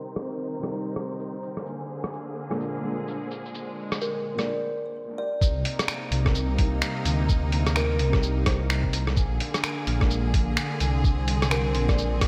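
A dreamy, reverb-soaked mix with a low-pass haze opens this wistful, melancholic future garage excerpt, set in a swung 4/4 and moving between Cm7 and Bb7. A felt-muted upright piano plays soft, boxy accompaniment with tape echo, while a clear symphonic string section holds smooth, bowed chords with light vibrato, both pumping under sidechain compression. An airy, breathy wind-like noise texture hovers in the background until 4.5 seconds, and a muffled, tape-warm lo-fi sampler-style kit of finger snaps, hi-hat, rim click and shaker sits under a filter sweep through the opening stretch. A woody, ringing kalimba enters at 4.0 seconds with a plucked, delayed melody. At 5.4 seconds a thumpy electronic kick and a deep, rumbling detuned saw bass arrive, the bass saturated and up front as it pumps under sidechain compression.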